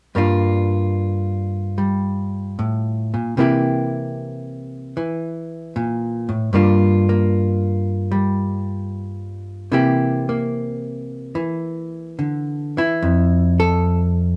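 Solo jazz in a warm, playful mood, this short excerpt cut from a longer piece features a lone hollow-body electric guitar, heard from 0.1 s to 14.4 s. The guitar is clean and picked with a dark tone, sitting up front in the mix and ranging from F2 to A4. The time is in four, with a swung eighth-note feel played rubato, so the pulse breathes freely. The harmony moves back and forth between Gm7 and C7 before settling on Fmaj7 at 13.0 s, where a new section begins. Light reverb gives the guitar a sense of space, and a faint mains hum can be heard beneath it.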